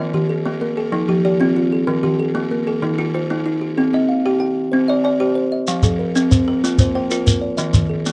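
Dark, lightly reverberant sound frames this hypnotic, rippling fragment of southern African traditional music, an mbira-style interlocking cycle in 12/8 at 126 BPM (dotted quarters), where a bright, buzzing, woody kalimba sits up front over a second kalimba with short, plucked notes on a solid board, both weaving arpeggios through Eb, Fm, Cm and Bb, until a grainy, mellow shekere joins close up at 5.7 s.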